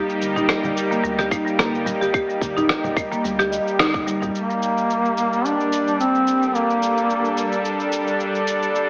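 The mellow duduk stands out once it enters at 4.3 seconds, carrying a folk-style solo melody up front with vibrato and scooped notes in a narrow range, colored by tape echo. This short cut of organic downtempo in G minor moves at 109 BPM in 4/4 with a light swing on the sixteenths, and its mood is warm and meditative. A bright, tense, string-like bowed drone holds sustained chords throughout with slow attack, vibrato, built-in reverb and sidechain pumping, while a woody marimba with medium hard mallets plays arpeggios through a digital delay until 4.3 seconds. Gritty, overdriven electronic shaker, rim click and claves sit up front, joined in the first half by soft-handed, dry congas and a round sine sub bass in the background, plus a tight electronic kick from 1.3 to 4.0 seconds, with a band accent at 3.8 seconds. The harmony moves from Eb/G to Gmadd9, and the whole mix is heavily compressed into an AM radio sound inside a wet digital room reverb.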